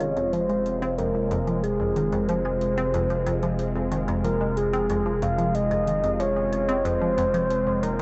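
A straight 4/4 pulse at 92 BPM drives this cosmic, mysterious fragment of ambient, sequencer-driven space music in F minor, where a round, detuned analog pluck riff with cassette grit and tape echo sits under a full, dark octave-layered synth lead carrying the melody up front with vibrato, a swirling phased pad holds sustained chords, a deep sine sub bass anchors the low end, metallic electronic hi-hats and claves tick faintly through tape echo, and from 1.8 s a very quiet, resonant bubbling stepped-filter texture drifts in, all bathed in a huge, wet reverb with a dim, rolled-off top end.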